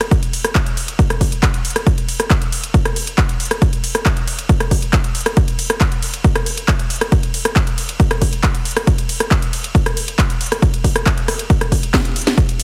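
Relentless and industrial, this straight 4/4 techno cut runs at 137 BPM, with a punchy, layered electronic kick drum sitting up front from 0.1 s to 12.5 s. A produced techno kit brings handclaps, a cracking snare, rim clicks, smooth hats and ride cymbal, the hats and cymbals pumping against the sidechain, and a drum fill arrives at 11.9 s. The dry, heavily compressed sound has a radio-like squeeze and a small-room character on both drum parts, and the piece is cut from a longer track.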